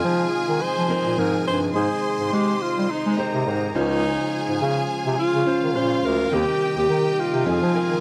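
Disco at 105 BPM in F minor, this excerpt from a longer piece has a glamorous, sultry mood, with a light swing on the sixteenths and a light reverb around the band. A breathy alto saxophone carries the melody up front, its close-miked, whispered subtone full of vibrato, soft attacks and scooped notes in a jazz style. Beneath it, a bass clarinet in a vintage, classical style plays the bass line up front, while a lush bowed string section adds a smooth second line above. A grand piano supplies intimate accompaniment with audible action noise, and a clean tonewheel organ holds sustained chords in the background, its key click and vibrato heard through a stopped rotary speaker. All parts play together throughout the 8 seconds as the harmony moves from Fm7 through Abmaj7 and Dbmaj7 to Cm7/Eb before returning to Fm7.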